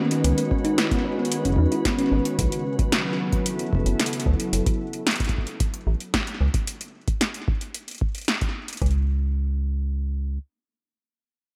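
IDM at 112 BPM in C# minor, glitchy and intricate and cut from a longer piece, where a glassy, ethereal FM pad holds sustained chords from C#m9 to B7sus2 until 4.5 s while a round, tine-like thumb-piano synth pluck with chorus and analog delay sits in the background with arpeggios until 2.2 s, both under filter sweeps, as an electro analog drum machine with punchy snare, hi-hat and its own delay is joined by a dark, fast-attack metallic FM bass, whose filter sweep runs to 6.7 s and which carries on to 10.4 s, and then by a deep, tape-warm electronic kick, within a dreamy mix soaked in lush hall reverb.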